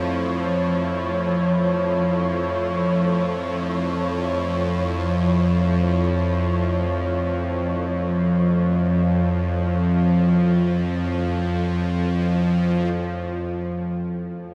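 Soaked in a wet plate reverb, this vast, ominous dark ambient drone drifts in free time. A tense, nasal, bowed-like drone sits up front with vibrato, while a deep, moody pad with chorus and ring modulation fades out in the background over the first 12.9 seconds, and a breathy, wind-like tuned noise texture hovers until 13.0 seconds. The harmony shifts from A to F5 at 12.9 seconds, near the end of this fragment from a longer piece.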